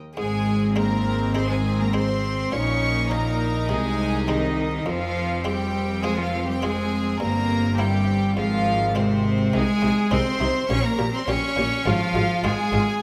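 A straight 4/4 pulse at 103 BPM drives this festive, brilliant baroque-style concerto movement in Ab major, cut from a longer piece. A clear, close solo cello carries the melody alongside a rich-toned violin section up high, while a focused second violin line and a rich viola section fill the middle, a vibrato-laden double bass section and a background symphonic cello section anchor the bass, and a muted, lute-like buff-stop harpsichord sits dry and in the background from the very first moment, the ensemble bathed in a recital hall reverb.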